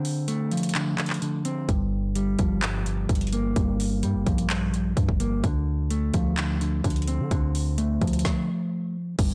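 A blown-out, overdriven and dry recording carries this eerie, menacing half-time trap cut at 128 BPM, where a dark, clean, fingered electric guitar sits up front over Dm7 and Gm7 chords, an electronic kit brings a hard-clipped kick, woody snare, metallic hi-hats, handclaps and crash, a deep, sine-toned 808 bass with long decaying notes joins at 1.7 seconds, and the music stops at 8.2 seconds.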